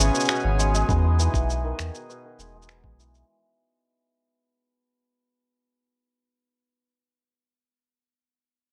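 A shimmering, up-front hammered dulcimer plays filtered arpeggios with delay and rings on alone until 6.8 s in this wistful, autumnal folktronica fragment, cut from a longer piece and fading out from the start. Reedy, airy accordion chords sit alongside it, and both parts carry a low-pass filter sweep, while a deep, round sine sub bass holds the bottom as the harmony moves from C#7(no3) to Emaj7. Muffled, pitched-down, tape-toned shaker and finger snaps sit forward over a straight 4/4 pulse, joined at 0.9 s by a thumpy, compressed electronic kick, all in a light reverb.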